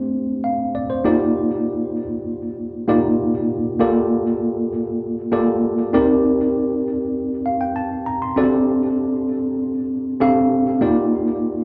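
A wet studio reverb and the feel of a band playing live in one room frame this bittersweet, urban pop piece at 98 BPM, where a worn, slightly out-of-tune tine electric piano, lightly overdriven with tape echo and heard up front through its built-in speakers, plays alone across the whole 11.6 seconds, moving through D7sus4, Ebmaj7, Gm9 and Cm9 before returning to D7sus4 and Ebmaj7.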